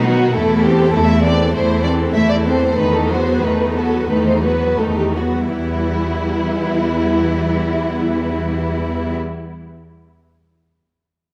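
A dark, smooth-topped first violin section carries an expressive melody with vibrato and portamento in this dramatic, urgent excerpt from a quick classical-period orchestral movement in E minor at 82-102 BPM, backed by second violins with a soft attack, lush and distant violas, and an even, up-front cello bass, all placed in a moderate scoring-stage reverb as the tempo slows over the first 5.5 seconds and the harmony moves from Am/E through B7/E to Em at 5.5 seconds.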